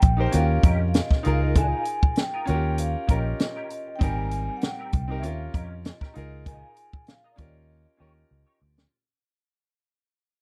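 Lush 1970s-style soul at 98 BPM in 4/4, this romantic fragment is cut from a longer piece and carries a gentle 16th-note swing and a fade-out across its nine seconds. A vibraphone played with soft mallets carries the melody in a mellow, ringing tone with fast motor vibrato, while a brilliant, polished concert grand piano supplies short-sustain accompaniment. A clean, scooped semi-hollow electric guitar plays a riff through wah and ensemble chorus, sitting lower in the mix than the other parts. Underneath, a dark, round, foam-muted vintage electric bass and a compact cocktail kit with a high-tuned snare, punchy kick and hi-hat sit up front, and the drums close with a fill from 7.7 seconds. The harmony moves warmly between Eb7, Db69 and Abmaj9 in a dry, intimate sound with little reverb.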